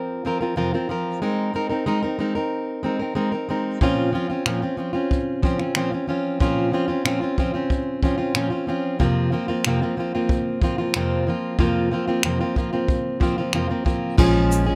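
This excerpt of reflective, wistful acoustic pop opens with a fingerpicked steel-string acoustic guitar, full-bodied and up front, carrying the accompaniment in Bb minor at 92 BPM in a straight 4/4. At 3.8 seconds a jazz brush drum kit enters, sounding distant and roomy, with dark cymbals, a boomy kick, finger snaps, shaker and a crash cymbal. The harmony moves from Fsus4 through Abadd9 to Bbmadd9, returning to Fsus4 before settling on Bbm7. At 14.2 seconds, just before the cut, a mellow tine electric piano heard through its built-in speakers takes the bass on a low Bb, while a metallic, ringing vibraphone with slow motor vibrato sounds an F in the background. The recording is dry, with little reverb.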